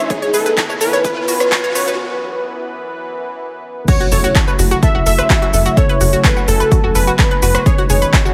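A bittersweet, expansive progressive house passage opens on a build-up: a riser, a thick, detuned unison lead with gritty sampler character and a filter sweep, a glassy wavetable pluck in the background, a smooth analog pad holding sustained chords, and a round, bright analog pluck spinning arpeggios, the synths all pumping against the beat. A punchy, overdriven electronic kick and a big-room kit of crisp hi-hats, handclaps, rim clicks, cabasa and crash cymbal arrive almost at once, and a break at 2.0 seconds gives way to the drop at 3.9 seconds, marked by an impact. A tight, driving, saturated sequencer bass joins at 4.1 seconds, while digital delay trails the lead and both plucks under a light reverb.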